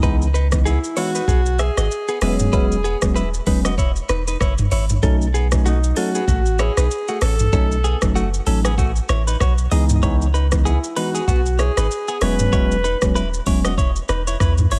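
A swung 16th-note groove at 96 BPM in 4/4 drives this breezy, joyful afrobeats excerpt in B mixolydian, with an electronic afro-pop drum kit of knocking kick, metallic hats, rim click, shaker and toms sitting up front beside a deep, punchy sine sub bass with a pitch-drop attack. A worn, slightly out-of-tune tine electric piano with phaser plays through C#m9, E6 and B9 chords, while a bright, compressed, direct-recorded clean electric guitar picks a riff through spring reverb and digital delay. From 0.7 seconds a breathy, intimate alto saxophone carries the melody with light vibrato, scooped notes and a soft echo of digital delay, all in a dry, close-sounding mix.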